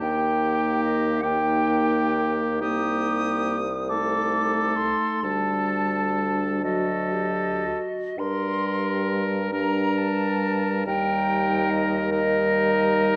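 A pure, tongued silver concert flute carries the melody from 0.0 s to 13.2 s, its vibrato singing high in the register yet set at a distance in the hall. This excerpt of a slow, romantic movement for wind quintet moves in a rubato 6/8 at 36-50 BPM in dotted quarters, with a yearning, elegiac mood. Just beneath it, an up-front oboe with light vibrato and a soft attack traces a second line, while a classical-style clarinet and a close-miked, mellow French horn fill in the accompaniment. A roomy bassoon with its own vibrato anchors the bass from low in its range. The harmony starts on Eb, darkens through Cm7, Adim/C and a Dsus4 that settles onto D, then passes through Gm before coming home to Eb, all within a recital-hall reverb that lingers for 1.6 seconds.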